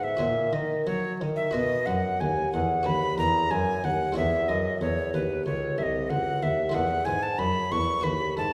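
From the opening moment, an alto recorder, harpsichord and bassoon sound together in this short excerpt of a baroque-style sonata movement with continuo, radiant and dance-like in mood. The recorder carries the melody up front with a wooden, airy tone, vibrato, tongued notes, a distinct chiff and lifted highs. Beneath it, the bassoon supplies a mellow bass line, also close and present, shaped in a classical manner with soft attacks and a light vibrato. The buff-stop harpsichord fills in the accompaniment in the French style, its plucked sound muted, lute-like and dry, sitting lower in the mix. The pulse is flexible and rubato, and the harmony moves from F#/A# through B/D# and C#m to E across the 8.5-second passage. The playing sits in a church or concert hall, with a wet recital-hall reverb and a 1.6-second decay.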